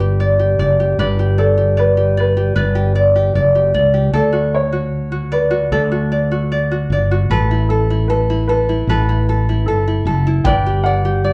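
A growly, bright fretless electric bass sits up front, anchoring this easy-going, sunny acoustic pop excerpt at 76 BPM in D major, tuned to A4 = 435 Hz, while a light, fingerpicked tenor ukulele plays the accompaniment and a dark, woody upright piano with short sustain carries the melody, both touched by slapback echo. The chords move from G to D to Asus2 and back to G, and a punchy kick drum with a rolled-off top appears only at 10.4 seconds. It sounds like a live gig heard through a club's PA, with moderate room reverb and a dulled top end.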